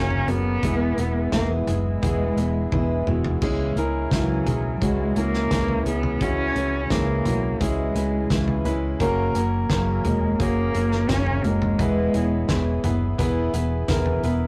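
A rough rehearsal-room recording with warm saturation and a moderate room ambience opens on an uplifting, warm stretch of piano-driven pop at 86 BPM in F# mixolydian, cycling through F#, E and C#m. A dark, woody bowed cello sits up front with vibrato, carrying the melody until 12.8 seconds, over a clear, intimate grand piano with audible action noise, a full-bodied riff on a picked jumbo steel-string acoustic guitar, and a round, foam-muted fingered electric bass. A loose indie drum kit with a punchy kick, fat snare and dark cymbals drives the groove, marked by a fill at 2.7 seconds.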